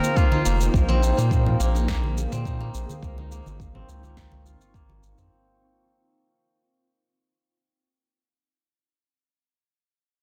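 Dense and heavily limited with a light reverb, this short cut from a longer organic downtempo piece fades out across its whole length at 105 BPM in a straight 4/4, with a meditative, warm mood. A bright, silvery steel-string zither played with fingerpicks rings through arpeggios for the full 8.2 seconds, softened by a low-pass filter and tape echo, and carries a filter sweep. An ethereal, airy pad holds sustained chords moving from F7sus4 to Bbsus2 to Dbmaj9, its mellow detuned tone shimmering with ensemble chorus, tremolo, built-in reverb and sidechain pumping. A nasal trumpet with a straight mute offers only a brief melodic phrase, with vibrato and scooped notes, before stopping at 0.6 seconds. Up front, a round, dark analog bass pumps beneath a deep electronic kick alongside a punchy electronic snare and shaker, while compressed, saturated congas sit in the background.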